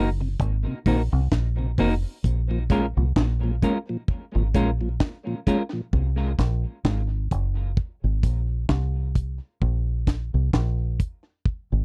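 A dry, close 1970s-style studio sound with light reverb frames this deep, heavy dub reggae excerpt at 65 BPM in 4/4 with a swung sixteenth feel, where a round, foam-muted fingered bass and a dark, tight-kicked drum kit with a high-tuned snare sit up front, while a clean hollow-body guitar and a mellow, key-clicking tonewheel organ through a slow rotary speaker, both soaked in tape echo, play over chords moving from Cm7b5 to Bbm7 and drop out by 5.8 seconds, just before the harmony shifts to Gbadd9.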